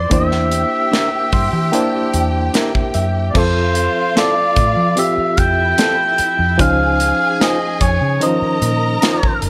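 Smooth and warm, this 1970s-style soul passage at 74 BPM sets a distant, lightly vibrato solo oboe melody over a lush, bowed violin section and a barky, bright reed electric piano with light overdrive and medium tremolo, which adds a fill from 0.9 to 3.4 seconds. A dark, round, foam-muted fingered electric bass and a tight, polished modern studio drum kit with crash, hi-hat, kick and snare anchor the groove, while a mellow, clean electric guitar riff with spring reverb sits in the background from 0.9 seconds. The harmony moves from C9/E to Fmaj7 at 3.4 seconds and then Dbmaj9, all within a small room ambience.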